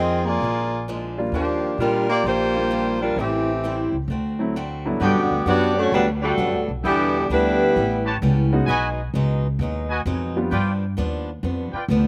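A saxophone section with light vibrato carries the melody up front until 8.1 seconds in this energetic, brassy big band swing at 131 BPM, over a woody, thumpy upright bass, a bright, boxy picked acoustic guitar and a smooth vintage grand piano, while from 5.0 seconds a tight trumpet section adds soft-attack stabs and a background trombone section plays a clear second line, both with slapback echo, in a dry outdoor sound.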